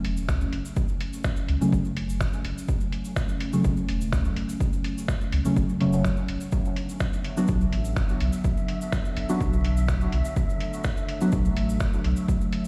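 A punchy, up-front electronic kick drives a straight 4/4 at 125 BPM, joined by a muffled, pitched-down sampler kit of finger snaps and hi-hat and a grainy, saturated cabasa in this nocturnal, meditative dub techno cut from a longer piece in F# minor. A round, soft sub bass and a warbling, nostalgic tape-like pad with 12-bit grit hold sustained F#m and Bm chords under sidechain pumping, while from 1.6 s a dark, deep chord stab with phaser and dub echo drifts through a filter sweep, and an airy, breathy wind-like noise texture fades in at 7.2 s. The whole sounds as if played on a big system in a bare stone room, with vinyl crackle and light digital ambience.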